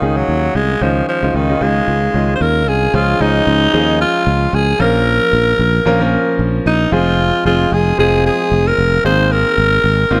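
A raspy, gritty alto saxophone carries the melody from the opening moment, its scooped notes and light vibrato set up front with a touch of delay, over a clear, polished concert grand piano and a growly, amped fretless electric bass in this romantic, glossy 1980s-style pop passage at 113 BPM with a gentle sixteenth-note swing. The piano adds a present, short-sustained accompaniment with deep low end, while the sustaining bass sits forward beneath it. Light studio reverb surrounds the trio as the harmony moves from Dbadd9 through Db, Bbm and Fm to Abadd9, with a new section beginning at 2.9 seconds.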